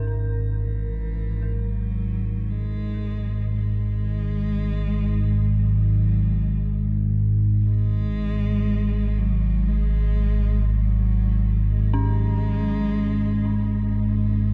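Cavernous and unsettling, this dark ambient drone fragment in free time rests on an up-front, warbling analog drone with lush chorus and a filter sweep across its 14.5 seconds, while a faint, eerie, inharmonic synth bell traces arpeggios through tremolo, shimmer reverb and delay, and a close, woody bowed cello enters at 0.5 seconds, fading in with a vibrato melody, all set in a vast cathedral reverb.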